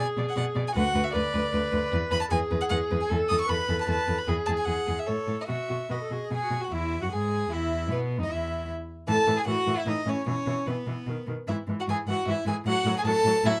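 In a quick, straight 3/4 at 152 BPM, this lively, graceful classical-period movement for string quartet in E major is cut from a longer piece, with all four bowed players sounding from the start until about 13.5 seconds. An up-front first violin carries the melody with an airy, nasal gut-string tone, while a second violin and viola, set more distant with light vibrato, fill in the inner line and accompaniment, and a close, reedy cello anchors the bass. The dry, detailed recording keeps each period-style voice intimate as the harmony moves from B minor through E and A to a close on F-sharp minor over A.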